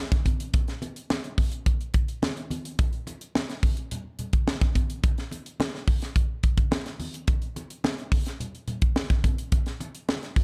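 A crisp fusion drum kit opens this upbeat, glossy pop excerpt in a straight 4/4, its hi-hat, punchy kick and high-tuned snare sitting up front with an airy, polished studio-room sound. Congas enter at 0.3 seconds, low-tuned with a thin, bright skin and soft hands, placed much further back in a live room. The production is dark and warm, with little reverb.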